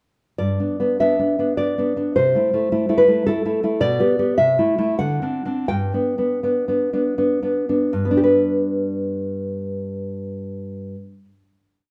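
Warm and nostalgic, this short, complete romantic piece for solo classical guitar moves in a rubato 3/4, the up-front, thumb-plucked nylon strings carrying a single-line melody over repeated chords with an audible finger squeak, slowing from 3.0 to 7.9 seconds before a final chord rings into the moderate reverb of a large studio.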